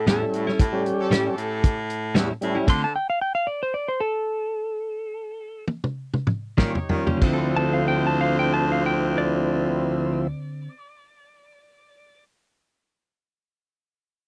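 Straight-eighth soul blues in D minor, smoky and soulful at 92-115 BPM, with a dark, compressed lap steel played with slide and fingerpicks carrying the melody over a punchy, roomy baritone saxophone bass line, clean direct-recorded electric guitar stabs, thick, lightly overdriven tonewheel organ on slow rotary, very quiet smooth horn-section chords and a tight, mid-forward soul drum kit, set in a dry, close 1970s-style studio sound; the saxophone, guitar, organ and horns stop at 2.7 seconds, leaving lap steel and drums as the tempo slows and the drums fill from 4.8 seconds, before those parts return at 6.6 seconds.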